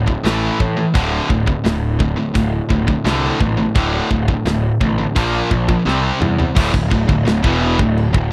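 A steady, straight 4/4 pulse at 86 BPM drives this dark, epic heavy metal passage in D minor, cut from a longer piece. The tight acoustic drum kit enters at 0.1 seconds and sits up front, with a medium-tuned snare, tight kick, hi-hat, toms, and crash and china cymbals, all heard in a mid-forward sound with a rolled-off top. Two bright, picked distorted electric guitars play the riff from the start, one of them high-gain, both set back in the mix. Also up front, a growly fuzz bass, overdriven and heard both direct and amped, carries the low end. The harmony moves through A5, D5, Bb5 and C5 before a drum fill at 5.9 seconds leads into a new section on D5 at 6.6 seconds, all in a dry, close studio sound with a 1970s character.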